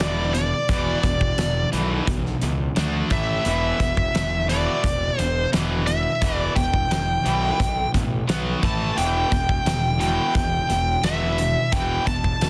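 Heavy and driving, this hard rock excerpt in E minor moves at 87 BPM in a straight 4/4, with a bluesy, distorted lead guitar up front carrying the melody over two bright, picked rhythm guitars riffing in the background, one high-gain and one overdriven, a round, punchy fuzz bass and a big, dark drum kit with a fat snare and punchy kick, all through chords shifting from E5, D5 and A5 to Em, then B5 and A5 back to Em, wrapped in light small-room reverb and a dense, heavily limited modern master.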